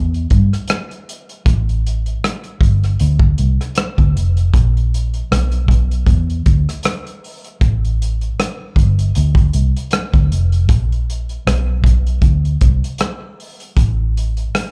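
This sounds like a live club set heard through the house PA, with only a faint trace of the room's reverb. The cut from a longer R&B and neo-soul piece carries an introspective, smooth mood, set in a lazily swung 4/4. A vintage fingered electric bass sits up front with a dark, round, foam-muted tone, moving through a low register from F1 to G2 and dropping out at 14.4 seconds. An acoustic soul drum kit of hi-hat, kick and rim click feels gritty and saturated, with a tight kick, a rolled-off top and a pumping room. Together the two parts keep the whole passage unhurried.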